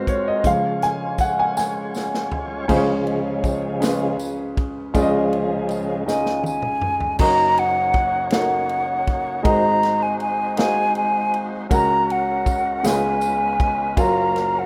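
Soulful and uplifting, this slow gospel passage in 6/8 moves at 53 BPM, with an intimate baby grand piano carrying the accompaniment and taking the spotlight at the start, its action noise audible, while a thick, lightly overdriven tonewheel organ holds sustained chords through a slow rotary speaker and steps forward for a solo at 2.7 seconds. A punchy, up-front country drum kit adds fills, and a jingly tambourine sits far back in the mix. At 6.1 seconds a pure, hollow, close-miked concert flute enters with a tongued, vibrato-laden melody over chords such as F#6, G#7 and F#maj7, all bathed in a lush hall reverb within a rough home-demo mix of this section from a longer piece.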